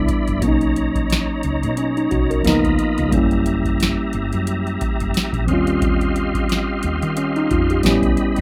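A rough home-demo mix with light reverb frames this short, sultry neo-soul and R&B fragment, cut from a longer piece and tuned slightly flat to A4 = 439 Hz. At 89 BPM in 4/4, the groove carries a gentle 57% swing on the sixteenths, and a booming analog drum machine enters at 0.1 seconds with a deep kick, tonal snare and metallic hi-hats that sound re-recorded in a small room. A worn, slightly out-of-tune tine electric piano sits clean and up front as the main accompaniment, while a clear, warm tonewheel organ holds sustained chords above it, colored by chorus vibrato, key click and a fast rotary speaker. Underneath, a woody fretless electric bass brings a warm, growly, punchy, hollow-body tone from its amp. The soulful harmony moves through lush extended chords, from Bmaj9 through Db13, Gb7b9 and Eb13 before landing on A9 at 7.8 seconds.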